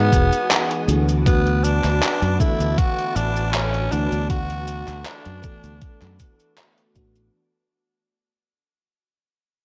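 The hazy cassette-tape sound, with light digital ambience, frames this short, dreamy and nostalgic vaporwave excerpt at 79 BPM, fading out across its 7.3 seconds over an Emaj9 that moves to D6. Up front, a raspy, growling tenor saxophone with vibrato carries the melody through tape echo until 6.2 seconds, over a lush FM electric piano with a soft pad layer, bathed in chorus and echo, and a silky string machine holding mellow, 12-bit-gritted chords in the background. A direct, tube-saturated fingered bass anchors the low end, while an overdriven, thumpy electronic kick and a detuned 8-bit drum machine playing cabasa, handclaps and hi-hat through gated reverb enter at 0.1 seconds.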